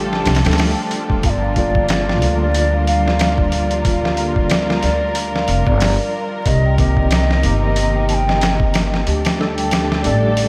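A swung 92 BPM trip hop groove in G minor, built on gritty, pitched-down sampler drums with a thumpy kick and a woody pizzicato upright bass up front, carries this smoky, melancholic piece, where a tine electric piano with tremolo, sampler grit and tape echo, dark sul tasto strings, a bell-like celesta playing arpeggios through lush chorus and a very quiet, nasal drone blend in a dreamy, reverb-soaked haze with vinyl crackle, while a mellow, airy wooden flute takes the melody through dub echo from 1.3 seconds.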